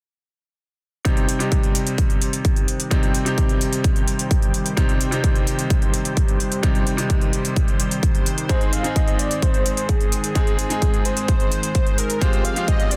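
Festival progressive house with an emotional, euphoric mood, this excerpt moves at a straight pulse in 4/4 over a Cm to Ab to Fmadd9 progression. A bright baby grand piano opens at 1.0 seconds, its brilliant, intimate tone carrying audible action noise, with sidechain pumping and digital delay shaping the accompaniment. Almost at once a lush, thick sawtooth-and-square unison pad arrives with slow-attack sustained chords, chorus and pumping, joined by a punchy, up-front electronic kick and crisp, tape-warm layered hi-hats. At 8.5 seconds an airy, dreamy lead enters with a detuned sine tone, a noise layer, chorus, vibrato and digital delay, singing softly above the harmony. A very quiet electronic riser appears at 12.8 seconds as the kick drops out, all within a dense, heavily limited modern master and digital ambience.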